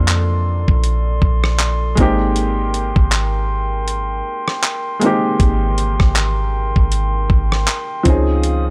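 A gritty, sampler-style soul drum kit sits up front, its thumpy kick, handclaps, hi-hat and rim click compressed and dusty, with a lazy swing on the sixteenths that gives this contemporary R&B fragment a relaxed, romantic sway. Beneath it, a soft 808-style bass lays down deep, round sine tones with a fast attack that then decays, dark and close in the mix. A felt-muted upright piano plays tender accompaniment in its middle register, mellow and intimate with a short sustain, the noise of its action audible through the thin felt. Above, a glass harmonica holds sustained chords that bloom slowly, pure and ethereal, with a faint beating shimmer. The harmony drifts from Bbmaj9 to Abmaj9 and reaches Dbmaj9 at 8.1 seconds, all in a dry, gritty hardware sound cut from a longer piece.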